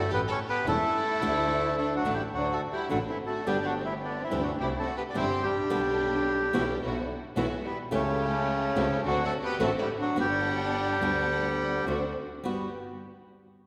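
A wet, spacious reverb from a church or concert hall surrounds this short tango fragment, which has an elegant, nostalgic air and a rubato feel. Up front, a reedy bandoneon with a vintage, band-limited tone carries the melody. Beneath it, a lush bowed violin section with vibrato and a soft attack traces an expressive second line. A single bowed double bass, earthy and distant with light vibrato, anchors the low end. A bright acoustic flamenco guitar, fingerpicked with audible finger squeak, joins at 0.7 s in the background, and at 3.5 s a dark, woody string section adds bowed stabs behind it. The harmony moves from A through Dsus4 and D to Gadd9 and Cadd9, passes through A7/C# and D7, and settles on Gmaj7 as the fragment closes.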